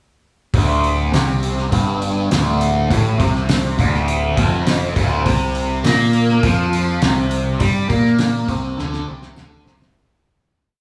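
A short psychedelic rock piece in D minor opens at 0.5 seconds with the band together: a fuzz guitar playing a single-note riff, a growling overdriven bass doubling that riff in driving eighth notes, and a cloth-damped drum kit. The mood is mysterious and hypnotic, with a straight 4/4 groove at 102 BPM that moves from D minor to a C power chord. The double-tracked guitar sits up front with distortion and a phaser, while the bass sounds bright and direct, and the drums are thuddy, with a fat snare, tight kick and rolled-off top. A jingly tambourine enters at 1.1 seconds, very quiet and distant, as if heard across a large room. The band plays live in one room under a wet studio reverb, and a drum fill arrives near the end as the track fades out from 7.6 seconds.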